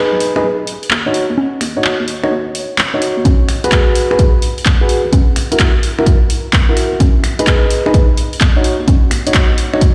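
A lush hall reverb and the sound of a big sound system in a bare room surround this late-night, soulful two-step UK garage excerpt, which builds at 128 BPM with a swung 16th-note feel over B6, D#m7, G#m7 and F#7 chords. Up front, a dark, mellow concert grand plays stabs with audible action noise, vintage 12-bit sampler grit, a low-pass filter and dub echo, while a hollow, organ-like FM bass sits in the background with tube saturation and sidechain pumping. From 0.2 s a punchy, tape-warm analog drum machine brings congas, finger snaps, handclaps and hi-hat, and an electronic kick drum joins at 3.3 s.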